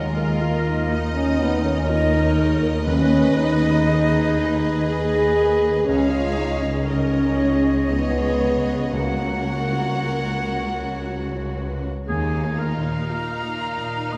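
Moving in a rubato 3/4 at 59 BPM with uneven beats, this bittersweet, longing Eb minor film-score excerpt sets a lush, vibrato-rich violin section melody among an airy, bright silver flute, mellow clarinet, distant oboe and a smoother second violin line, with a felt-muted upright piano's audible action noise and an intense viola section in the background, dark, distant French horn chords sustaining beneath, bowed double basses and portamento cellos holding the bass until 12.9 s, and round, very quiet timpani touching in at 2.9 s, all bathed in a recital hall's reverb.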